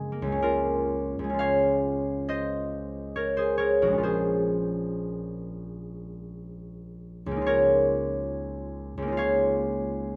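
A concert harp carries this graceful, peaceful classical solo piece on its own, sounding up front with a ringing, fingerpicked tone that spans from Bb1 up to Gb5. The music sits in Db major at 70 BPM in 4/4, and the rubato feel lets the phrasing breathe freely, with the instrument tuned to A4 = 439 Hz. The harmony opens on Db6 at 0.4 seconds, moves to Bbm9 at 4.0 seconds, and settles on Db69 at 7.5 seconds. A moderate studio ambience with a 0.5-second reverb tail surrounds the harp, and the production leans dark and warm. This brief excerpt is cut from a longer piece.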